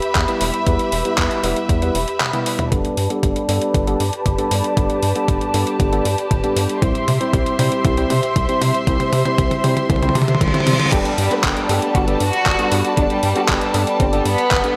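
A straight 4/4 pulse at 117 BPM drives this bittersweet, melodramatic italo disco fragment, cut from a longer piece, with a thumpy, overdriven electronic kick and a detuned 8-bit drum machine of crash, handclaps, hi-hat and toms, both re-recorded in a large room and the machine washed in gated reverb. Beneath them a round, deep analog bass with tube saturation sustains dark low notes, while a worn, slightly out-of-tune tine electric piano plays overdriven stabs through digital delay. A rich, smooth studio string section holds sustained chords up front from the start, moving from Em to Gadd9 at 2.7 seconds and on to C, with filter sweeps on both the strings and the electric piano through the middle stretch as the drums fill. A very quiet reverse cymbal and downlifter come in at 10.2 seconds, and at 10.9 seconds a bright, intense violin section enters with the melody, distant and lush in tape echo as the harmony returns to Gadd9. 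Light reverb and digital ambience surround the whole mix.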